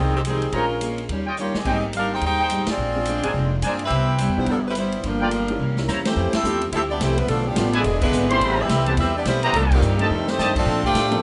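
A tight, close-miked saxophone section carries the melody with a bright edge and light vibrato in this joyful, energetic big band swing piece, cut from a longer performance at 213 BPM in 4/4. Beneath it, a woody, thumpy upright bass sits up front, and a swinging drum kit joins at 0.2 s with a boomy kick, a medium-tuned snare, hi-hat, ride and crash, adding fills while the band lands its accents. A clear trumpet section punctuates the music with soft-attack stabs, while a vintage upright piano and a picked steel-string acoustic guitar, complete with finger squeak, fill in the harmony from the background. At 5.1 s, a bright trombone section enters with a second line, just before the music moves into a new section at 6.2 s. The rich jazz harmony and the moderate reverb of a large studio give the ensemble a lively, roomy sound.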